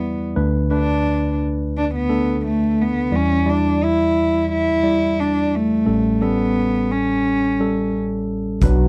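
A bowed cello and a worn, slightly out-of-tune tine electric piano open this reflective, melancholic acoustic folk-pop ballad, both placed up front in a dry, close sound. The single cello carries the melody with an airy, sul tasto bow, light vibrato and a nasal, intimate tone, while the electric piano accompanies across a broad register through Bm7/D, Em7 and A7. The cello falls silent at 7.9 seconds, and the piano carries on alone for a moment. At 8.6 seconds a round fretless electric bass with lush chorus, a soft-mallet drum kit with a punchy kick and hi-hat, and a distant, roomy French horn in classical style all enter together. The recording is cut off just after they arrive, leaving the fuller arrangement only briefly heard.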